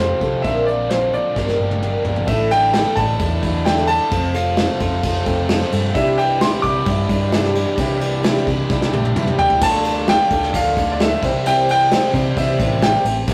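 A clear concert grand piano carries the melody in this wistful, reflective folk rock and heartland rock excerpt, over a shimmering, octave-doubled twelve-string acoustic guitar, a biting, double-tracked overdriven guitar riff and a round, punchy hollow-body electric bass. A soft brush kit with dark cymbals sits up front from 0.2 seconds, adding fills along the way, and a very quiet, reedy harmonium breathes in sustained chords from 2.3 seconds. The rough rehearsal-room recording carries warm saturation and moderate studio ambience, as the chords move from Bbadd9 and Gm7 through F and Cadd9 to Dm and C.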